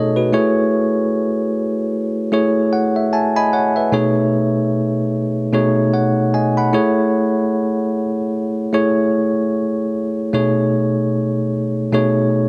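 A bell-like tine electric piano plays alone in this bittersweet, silky soul passage, cut from a longer piece, its bright, clean tone sitting direct and up front over a gently swung sixteenth-note feel. It alternates between Amaj7 and B13 chords, with a short fill from 2.3 to 3.9 seconds. A light reverb and digital ambience add a soft sense of space around the piano.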